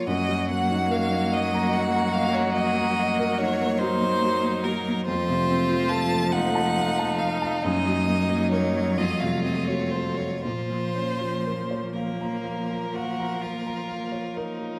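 In a rubato 12/8 pulse of about 40-49 dotted-quarter beats per minute, this elegiac, yearning slow romantic movement for piano quintet in Bb minor sets a clear, focused first violin with vibrato up front on the melody over a dark, mellow baby grand with long sustain, while a rich-toned second violin with a smooth top carries a second line alongside a soft-attacked cello, and an expressive viola and that cello sit in the background with vibrato and portamento, all in a moderate recital-hall reverb captured by close, detailed microphones as the harmony moves between Ebm/Gb and F before settling on Bbm at 10.4 seconds.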